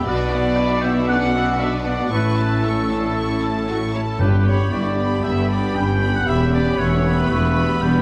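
Rich, vibrato-laden cello and double bass sections anchor this triumphant, soaring cinematic passage, cut from a longer piece, while a warm, lush violin section carries the melody over a Bm, A, G, Em progression. Focused violas, a smooth, even second violin line, a very quiet solo clarinet, a hollow, airy flute group and a background oboe fill out the harmony, as a French horn section sustains chords with light vibrato. A distant, roomy trumpet section punctuates with stabs from 0.1 to 7.8 seconds, and round, soft-mallet timpani sound from 4.2 seconds, all within a light reverb.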